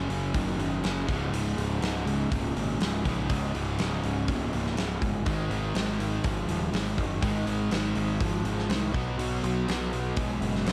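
Driving and confident, this short classic rock passage from a longer piece moves at 122 BPM in a straight 4/4 feel, centred on Db major. Three guitars carry the riff from the opening second: a crunchy overdriven guitar with a touch of spring reverb, a double-tracked distorted electric guitar with a scooped, bright edge, and a very quiet overdriven semi-hollow guitar adding hollow-body body beneath them, the first two sitting in the background. Up front, a fuzz picked electric bass growls through overdrive in the low register, direct and amped. A big rock drum kit joins at 0.1 s, mid-forward and up front, with a punchy kick, a fat snare, hi-hat and a rolled-off top ringing in a big room. The harmony moves through Gb5, Db5, Ab5 and Cb5 power chords, and the whole mix carries light reverb and tape saturation.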